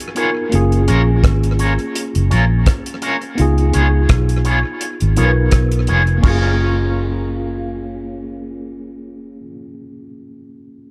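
Dark, warm production with light reverb and small-room ambience frames this sweet, smooth lovers rock reggae excerpt, which moves at 84 BPM in 4/4 with a gentle swing on the sixteenths, in F# major and tuned to A4 = 438 Hz. The cloth-damped drum kit sits up front, with a tight, thuddy kick, rim clicks, hi-hat and dulled crash cymbals with a rolled-off top, all treated with tape echo, and it drops out at 6.4 s. A vintage fingered electric bass, foam-muted, round and amped, anchors the low end as the loudest part. A worn, slightly out-of-tune tine electric piano, lightly overdriven through its built-in speakers and given tape echo, carries the accompaniment over C#7 and F#maj7 chords. An electric guitar adds bright, clean, twangy picked stabs shaped by an envelope filter, tremolo and tape echo, and a second passage begins at 6.2 s, settling back on F#maj7.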